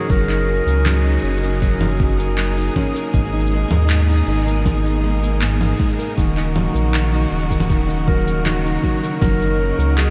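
Soaked in a huge, dreamy ambient reverb, this delicate, pastoral folktronica fragment at 79 BPM in F# major sets a mellow, delay-touched solo clarinet melody that sounds until 2.8 seconds and returns at 8.1 seconds over smooth, bowed string quartet chords with vibrato, fingerpicked classical nylon-string guitar arpeggios carrying their own delay, a round sine sub bass up front, and a deep, tape-warm electronic kick drum with produced cabasa, handclaps and congas re-recorded in a large room.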